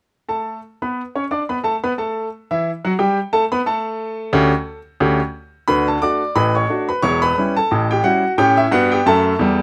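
A clear, intimate baby grand piano plays solo from 0.3 s in this playful, jaunty ragtime fragment at 89 BPM in 2/4 with a swung sixteenth-note feel, its natural, up-front tone carrying audible action noise under light reverb as it moves from an unaccompanied opening onto A7 and then to D at 5.7 s before closing on A7/E.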